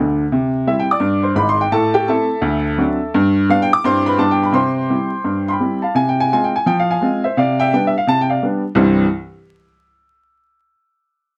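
Swinging at 170 BPM in 4/4, this playful stride-piano jazz piece in C major, cut from a longer performance, features a solo upright piano, clear and woody with long sustain and placed up front, which opens with a brief fill, moves through C, Am, D7 and G, shifts to Fm/C at 6.0 seconds and stops at 9.0 seconds, set in light reverb over a layer of vinyl crackle.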